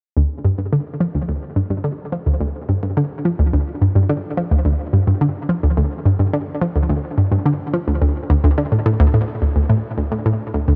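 This ambient excerpt at 107 BPM in 4/4 feels expansive and mysterious, as a round, detuned, bright analog pluck riff ranging from D2 to F3 plays up front from 0.2 to 10.8 seconds, colored by chorus, cassette tape and tape echo, with a filter sweep across the synth arpeggio throughout, all set in light reverb with a cassette-tape sound whose top end is rolled off above 10.5 kHz.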